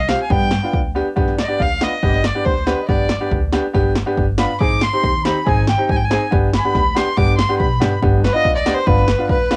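A straight two-beat pulse in 2/4 drives this klezmer passage, set by a punchy analog drum machine whose kick and snare, colored by cassette tape, drop out at 0.9 seconds. The mood is bittersweet and soulful. A rich, earthy violin, bowed by one player with light vibrato and a smooth top, sits up front carrying the melody and takes a solo from 1.2 to 8.0 seconds. A reedy accordion with slow beating plays a second line in the background behind it, while a bright, woody upright piano, polished and present, adds accompaniment up front; both share the tape coloring heard on the violin. A pizzicato upright bass with steel strings gives an acoustic, warm low end as the harmony moves from G to Ab and back to G, under light reverb with a homemade cassette character.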